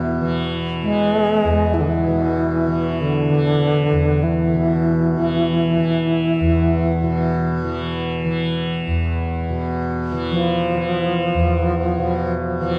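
World meditative music in free time, this short excerpt cut from a longer piece feels spacious and haunting. A bright, reedy bass flute carries the melody up front, its airy tone shaded with vibrato and tongued notes moving between D3 and G#3. Beneath it, a tanpura holds a softly plucked, buzzing drone from E2 to E3, shimmering and close at hand throughout the full 12.8 seconds. A bronze singing bowl, struck with a wooden striker, rings with metallic, slow-beating tones that sound barely audible and boxy, sounding from the start until 3.9 seconds. The whole recording sits in a wet church reverb and carries the worn, warbling pitch drift of old cassette tape.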